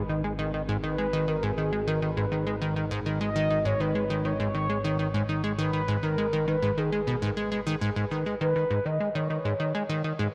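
A steady, straight 4/4 pulse at 101 BPM anchors this hypnotic, mysterious piece of ambient, sequencer-driven space music in G# minor, cut from a longer work and resting on a single G#m chord. Up front, a punchy, funky analog bass riff built from sawtooth and pulse waves snaps with a fast filter pluck and decays quickly, its delay adding echoes. Beneath it, an analog drone on a low G# swells in slowly and sustains with pulse-width modulation and chorus, evolving in tone before it stops at 7.9 seconds. Over the top, a mellow, horn-like synth lead sings a melody with a round tone, a soft attack, vibrato and portamento, shaped by a filter sweep and carried on chorus and delay. A moderate, lush hall reverb gives the whole a spacious glow, and a new section arrives at 8.0 seconds as the bass and lead carry on, the lead stopping at 10.0 seconds while the bass continues to the close.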